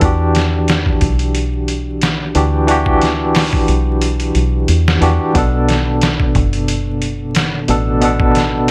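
A bright, barky tine electric piano with tremolo, tape echo and a filter sweep sounds at once alongside a gritty, pitched-down sampler-style drum kit with a thumpy kick, a round, punchy foam-muted dub bass and a bed of vinyl crackle in this dark, cinematic trip hop fragment, with the harmony moving from Em9 to Bm7 at 5.3 seconds.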